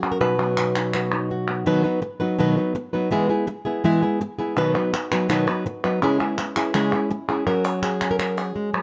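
A boxy, fingerpicked flamenco guitar with audible finger squeak and plate reverb carries the melody up front, joined from the start by crisp, band-limited palmas hand claps and a dark second flamenco guitar playing stabs in the background, in this proud, festive flamenco excerpt at 165 BPM in B major, where the claps pause between 1.7 and 4.6 seconds and the stabs end at 7.5 seconds.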